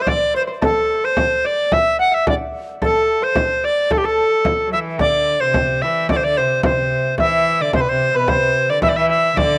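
Light reverb surrounds this brief cut from a longer medieval dance, which moves with an ancient, driving feel at 110 BPM in a straight 2/4, set in A dorian. A bright, chiffy tenor recorder with a pure wooden tone carries the melody up front, while a fingerpicked concert harp rings in the background as a second line and a deep, close, dry frame drum supplies the percussion. At 4.7 seconds a distant, bowed viola da gamba joins as another second line, its clear gut-string sound marked by light vibrato and a reedy edge.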